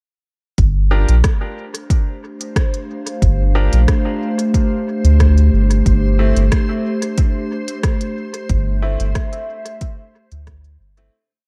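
A softly swung groove in four is anchored by an overdriven electronic kick up front and a sparse, tape-warm kit of closed hi-hat and rim click trailing dub echo, carrying this hazy, meditative ambient dub piece. Beneath it a round, deep sub bass plays a dub-style line, while a warbling, detuned lo-fi pad with chorus and reverb holds slowly shifting chords, moving from Gm7 to Am/G at 5.9 seconds. A bright, woody upright piano adds sparse echoing chord stabs, a reversed granular texture swells in on a held high note from 1.8 seconds, and the dark, warm mix fades out from 7.6 seconds.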